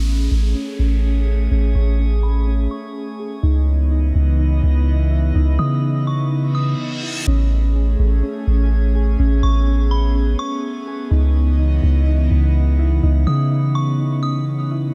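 A dreamy, floating hip hop excerpt at 125 BPM in a half-time feel, set in A lydian, where an airy, breathy pad holds sustained chords over a deep, dark 808-style bass that sits up front. Soft, round electric-piano-like synth keys play arpeggios through chorus and tape echo, while a glassy texture of drifting overtones hovers in the background and a delicate, tinkling tine bell carries the melody from 1.8 seconds. A filter sweep and a downlifter open the piece, and a reverse cymbal leads into a brief break at 6.8 seconds before the second section begins at 7.3 seconds, all within a digital ambience.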